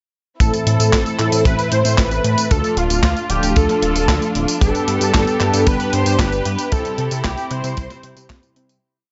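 A short, nostalgic italo disco piece opens at 0.4 s with everything at once: a tight, dry four-on-the-floor kick, a sampler-style disco drum machine of handclaps, closed hi-hat, snare and tambourine in a small room, and a glossy, octave-jumping synth bass with a chorused pulse-wave and sawtooth tone. Up front, a thick, detuned sawtooth unison lead carries a motif-based melody with vibrato, ensemble chorus and tape echo, while a dark synth brass adds held chords with syncopated pushes in the background and an intimate chamber string section sustains a warm bowed pad over Am, Dm, G and C. The danceable groove fades out from 6.0 s to its close at 8.8 s.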